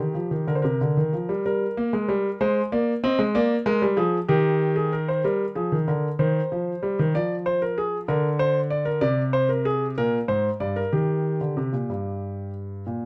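Serious and driving, this baroque-style two-part invention in Eb major moves at 63 BPM in a straight 6/8, tuned to A4 = 443 Hz and cut from a longer piece. A solo concert grand piano, warm and intimate with audible action noise, deep bass and long sustain, sits up front in light reverb across its G2 to Eb5 range from 0.0 to 13.1 seconds. A brief opening idea gives way at 1.4 seconds to a contrasting passage over Gm, Ab and Bb7. The opening material returns at 5.2 seconds and works through Cm/Eb, Fm and Bb9/C before settling on Eb.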